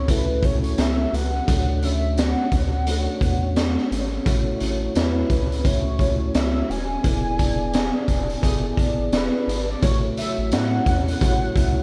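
Nostalgic and sunny, this short cut of swung indie bedroom pop sets a velvety, detuned synth lead melody over an electric guitar through a small old amp with lush chorus, a percussive, flute-like tonewheel organ turning on a slow rotary speaker, a round, deep analog bass, and an up-front, gritty garage drum kit with a punchy kick and high-tuned snare, moving through A6, Dmaj7 and E7 chords before a new section arrives at 9.8 seconds.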